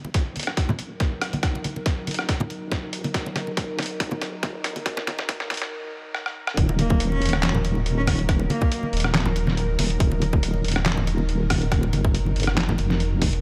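Deep dubstep with a brooding, meditative air, set in a half-time feel with a light swing. A deep, soft wobble bass sits up front through the whole excerpt, its detuned sawtooth and sine tones thickened by chorus and tube saturation into a dark, compressed weight. Above it, a tense, string-like drone holds sustained chords with slow attack, vibrato and its own reverb, and a filter sweep runs across it during the opening build-up. The drums pair a tight, tape-warm electronic kick, re-recorded in a large room, with a muffled, pitched-down sampler-style kit of snare, rim click, handclaps and filtered hi-hat, while bright, dry congas trail dub echo. A drum fill drives the build-up until a short break at 5.7 seconds, and the drop lands at 6.6 seconds. Soon after, a single rich, smooth cello with vibrato and dub echo sings a brief phrase, all inside a digital ambience.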